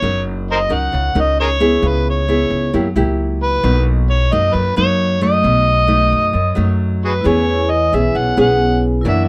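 An amplified, overdriven harmonica carries the melody up front in this smooth, intimate bossa nova excerpt, its gritty, jazz-style solo colored by light vibrato, scooped notes and tongue slaps. Beneath it, a full-bodied nylon-string guitar, fingerpicked in a classical manner, supplies the accompaniment and also sits up front. An upright bass played pizzicato on gut strings gives a woody, thumpy low end in a straight 4/4 feel. At 7.2 seconds a vibraphone with medium hard mallets and its motor off joins softly in the background, bright and metallic, close-miked and dry so its ringing tone stays focused. Light reverb gives the ensemble a modest sense of space.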